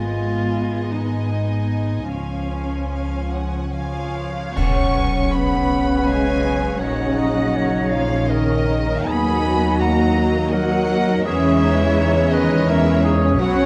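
A dark, woody solo cello sings the sorrowful opening melody of this moving, cinematic orchestral score until 4.2 seconds, unfolding in a rubato 3/4 at 70-84 BPM over warm chamber violins carrying the tune, floating symphonic violins in the background, lush violas, rich cellos and up-front double basses, while bright cymbals and concert bass drum surge in at 2.1 seconds, a hollow, distant flute and a clear clarinet add second lines, and a French horn section enters with sustained chords at 4.6 seconds, all set in a moderate scoring-stage reverb.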